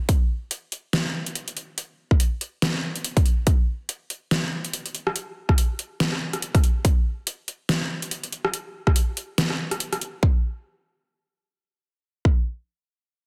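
This dubstep excerpt has a heavy, cavernous mood, with a half-time feel at 142 BPM and a 16th-note swing. An up-front, overdriven drum kit of metallic, filtered hi-hats, rim clicks and a deep, filtered snare runs over a punchy, layered electronic kick, both re-recorded in a small room under light reverb. During a short break the kit stops at 10.1 seconds, leaving the kick alone until 12.3 seconds, all within a dense, heavily limited master.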